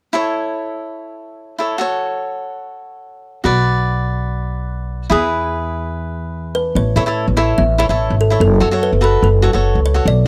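A light swing on the sixteenths drives this festive, bouncy calypso at 145 BPM in 4/4, a short cut from a longer piece set in A major. A crisp, picked acoustic cavaquinho opens alone at 0.1 seconds, sitting up front as it picks through A, F#m, Bm and E. At 3.4 seconds a growly, woody upright bass joins, played pizzicato on steel strings and placed up front in the mix. The kalimba arrives at 6.5 seconds to carry the melody, its thumbnail pluck bright and ringing with a hollow, boxy body and a full, close-miked presence. The second section returns to the A and F#m chords under this new tune. The sound is a dry, close 1970s-style studio recording with a small room ambience.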